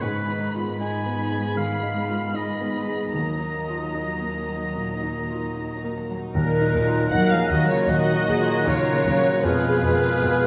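Cinematic, emotional film score, moving and sorrowful and cut from a longer piece, where a dark con sordino violin section carries the rubato melody above a clear, distant oboe and a veiled second violin line. A muted viola section, a warm grand piano, a ringing, very quiet concert harp playing arpeggios and a smooth-topped cello section bass hold the accompaniment under Abm, Ebm and Fdim harmony. At 6.3 seconds a mellow French horn section adds sustained chords, and from 6.4 seconds an airy, bright flute group, a present clarinet on a second line and a lush symphonic double bass section join, all set in a moderate scoring-stage reverb.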